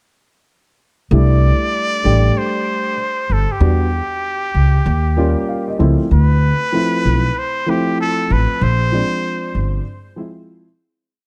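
A smooth, warm jazz-hop piece with a lazy swing opens at 1.1 seconds as a nasal, breathy muted trumpet with a soft attack and vibrato plays close, whispered call phrases over a dark, worn grand piano comping freely in rootless voicings, its action noise audible, and a thumpy, woody pizzicato upright bass carrying a syncopated line up front. The piano slips in a short fill at 5.2 seconds as the chords move from C69 through Em9, Eb9 and Dm7 to a closing Bb9. The small-room reverb and dark production hold it intimate until a fade-out begins at 8.6 seconds.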